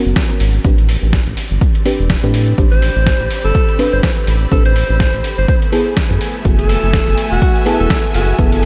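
Bathed in light reverb, this deep house excerpt has a deep, warm feel. Mellow chord stabs with chorus, tape echo and a filter sweep move through G#m11, Am11 and F#m11, while a distant, lush symphonic string section fades in, and both share a sidechain pumping with the round analog bass. A punchy, overdriven electronic kick and a dusty sampler-style kit of hi-hat and fat, gritty snare drive the swung groove, and at 2.7 seconds a vibrato-laden alto saxophone enters with a jazz-style solo line touched by tape echo.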